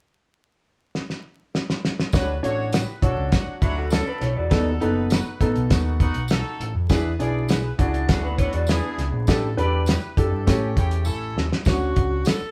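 A cloth-damped, thuddy drum kit sits up front in this uptempo 1960s-style soul excerpt at 101 BPM in D major, its fat snare and tight kick opening with a fill before the band arrives at 2.1 s. From there an overdriven, round electric bass picks out a dark line, a clear, woody upright piano supplies accompaniment, and a jingly tambourine sits in the background, while a distant, roomy horn section plays a jazz-style second line. Through the middle of the passage an electric guitar through a small old amp adds a slightly broken-up, lo-fi riff bathed in spring reverb. The harmony moves from Dmaj7 through B7 and E7 to A7sus4 and A7, and after another drum fill a smooth-topped alto saxophone steps forward at 11.7 s with vibrato, subtone and scooped notes under slapback echo. The band plays live in one room with moderate reverb and a layer of vinyl crackle, giving the clip an uplifting, warm glow.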